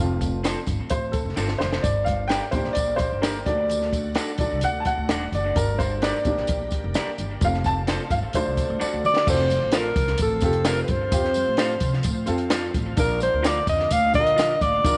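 Passionate and driving, this excerpt of uptempo 1960s-style soul moves at 129 BPM in a straight 4/4, opening on a woody, boxy upright piano with tube saturation that takes a solo passage up front until 9.3 seconds, over a growly pizzicato upright bass, a compact cocktail drum kit with a high-tuned snare and punchy kick, very quiet bright congas and a jingly tambourine. A slightly broken-up electric guitar through a small old amp adds lo-fi stabs with tape echo in the background, while a soft, detuned organ-like pad brings calm sustained chords from 2.5 seconds. At 9.1 seconds a subtoned alto saxophone with light vibrato and tape echo enters up front with a jazz-style melody, all set in a moderate echo chamber reverb with the top rolled off above 11 kHz.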